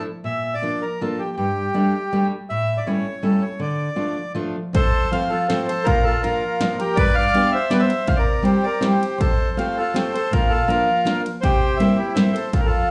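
A reedy bandoneon with slapback echo carries the bittersweet, whirling melody of this musette waltz over a full-bodied, fingerpicked steel-string acoustic guitar, while a punchy analog drum machine with tape-warm kick, snare and ride cymbal joins at 4.7 seconds as the harmony turns toward the relative major, all heard as a live gig through a club PA with moderate room reverb in a short cut from a longer piece.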